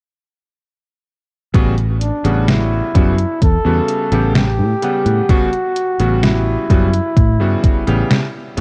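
A breathy, whispered flugelhorn carries the melody from 2.0 seconds, mellow and intimate with light vibrato, roughened by 12-bit sampler grit and tape echo, in this nostalgic, woozy vaporwave fragment at 64 BPM over an A13 chord. Beneath it, a clangy electric grand piano with lush chorus plays the accompaniment, while a dark, round, foam-muted fingered bass with transformer saturation sits up front. An overdriven, detuned 8-bit drum machine with a fat snare and hi-hat plays alongside a thumpy electronic kick that drops out at 7.8 seconds, all under light reverb and the warbling pitch drift of worn cassette tape.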